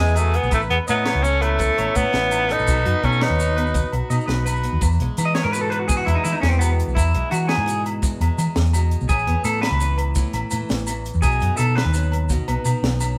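A bright, vibrato-laden tenor saxophone leads this sunny highlife guitar band excerpt in E major, with a breathy, whispered trumpet adding a second line in the background, both dropping out at 3.9 seconds. The music rolls along at 112 BPM in a straight 12/8, driven by a round, dark hollow-body bass up front, a dry funk kit with a high-tuned snare, ringing agogo bells, grainy maracas, a boxy picked archtop with finger squeak, and twangy, slightly broken-up electric guitar arpeggios with spring reverb. From 4.8 seconds a clean electric guitar solo enters, all captured live in one room with moderate studio reverb.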